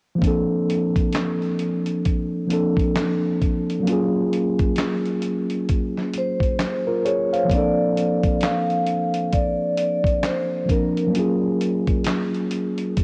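Lo-fi hip hop at a relaxed 66 BPM in Bb major, this mellow, nostalgic excerpt carries a lazy swing on the sixteenths and a soft cassette-tape haze. A clean tine electric piano sits up front from the start, its tone coming through built-in speakers as it moves between Bbmaj9 and Gbmaj9 chords. Alongside it, a dusty, sampler-style drum kit of kick, snare, hi-hat and handclaps sounds compressed and gritty, with a thumpy kick and a medium-tuned snare re-recorded in a small room. At 6.2 seconds a vibraphone played with soft mallets enters with the melody, its metallic, ringing, airy tone colored by a medium motor vibrato, and it drops out at 12.0 seconds. The whole piece has the feel of a home cassette recording, softened by light reverb and a digital ambience.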